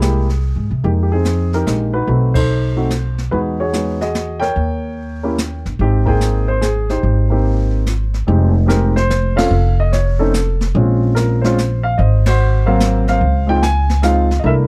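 A jazz piano trio swings along at 145 BPM in 3/4, its playful, relaxed waltz feel set in Ab major before turning to F minor at 8.3 seconds. A dark, mellow baby grand piano carries the melody up front, its short sustain giving the lines a natural sound as it moves through colorful changes such as C7b13, B7b9 and Emaj9. Beneath it, a woody pizzicato upright bass with steel strings sits forward in the mix and anchors the harmony throughout. The brush kit stays further back, with brushed snare, hi-hat, ride cymbal and a boomy kick heard in a small, natural-sounding room. The trio hits together at 2.3, 9.3 and 12.2 seconds, and the dry, dark production keeps the whole excerpt intimate as it passes through Fm9, Bbm9 and Ab13 to land on Dbmaj7.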